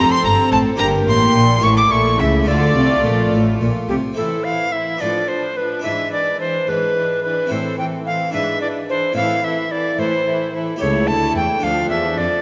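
Driving and stormy, this baroque-style concerto passage in 6/8 sets a bright, airy alto recorder with audible chiff up front over a very quiet violin section also carrying the melody, a gut-string violin section on a second line, a dark, distant viola section and a brilliant Italian-style harpsichord, while a nasal cello section and a rich double bass section carry the bass until the basses stop at 4.0 s, with a concert hall's reverb around the ensemble.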